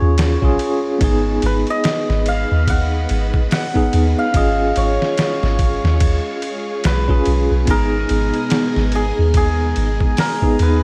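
Dark and melancholic, this short trip hop excerpt moves at 72 BPM with a 16th-note swing in G# dorian, its chords shifting from C# through G# minor. A bright, shimmering hammered dulcimer carries the melody through dub echo over a bell-like tine electric piano with tremolo and tape echo, while a deep, round 808-style bass and a gritty, pitched-down sampler drum kit with a thumpy kick sit up front, the drums entering at 0.2 seconds. From 1.0 seconds a vintage string machine with cellos adds mellow, sustained chords with ensemble chorus in the background, all in a dry mix.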